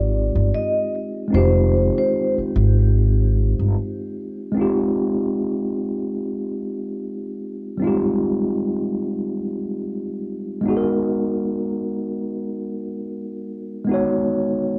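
Up front and mellow, a tine electric piano carries this reflective, melancholic lo-fi hip hop cut from a longer piece at 74 BPM with a lazy swing, moving from Fm7 to Abm7 at 10.7 seconds through worn, warbling cassette tape and moderate reverb, while a ringing vibraphone with soft mallets and medium motor vibrato sings a brief melody until 2.3 seconds and a woody, growly pizzicato upright bass stops at 3.7 seconds.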